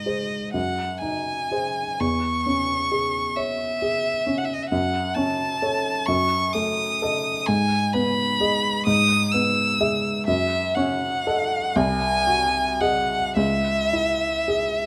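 Elegiac and yearning, this romantic classical duo for violin and baby grand piano moves slowly in 6/8 at 36-45 BPM, counted in dotted quarters, with a freely breathing rubato in C# minor and tuning set to A4 = 437 Hz. A single bowed violin carries the melody up front from 0.0 to 14.9 seconds, its tone rich and focused with expressive vibrato, ranging from D#5 up to E6. The piano accompanies throughout, sitting close as well, with a dark, mellow and intimate character, short sustain and audible action noise that gives it a natural, close-up presence across a range from B#1 to E5. The harmony opens on G# and G#7/F#, settles onto C#m/E, then passes through F#m, D#dim/F#, G#m, E/G# and D#m7b5/F# before G#7/B# draws it home to C#m at 13.4 seconds. Detailed close microphones capture both instruments within a moderate recital-hall reverb, and the passage is a fragment cut from a longer piece.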